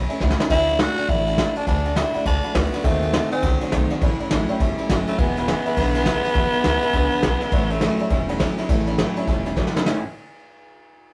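Retro and rollicking, this swinging rockabilly excerpt puts a growling, raspy tenor saxophone up front on the melody over a brushed drum kit with a punchy kick, a thumpy pizzicato upright bass, a picked dreadnought acoustic guitar and a slightly detuned vintage upright piano, while a twangy, slightly broken-up electric guitar riff enters at 2.8 seconds, all captured in a rough rehearsal-room sound.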